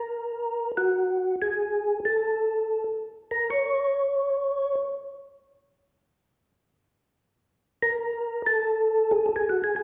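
A percussive tonewheel organ plays solo up front throughout this short bluesy, swinging jazz fragment, its mellow, dark tone marked by second-harmonic percussion, key click, chorus vibrato and a slow rotary speaker, all set in the lush reverb of a recital hall.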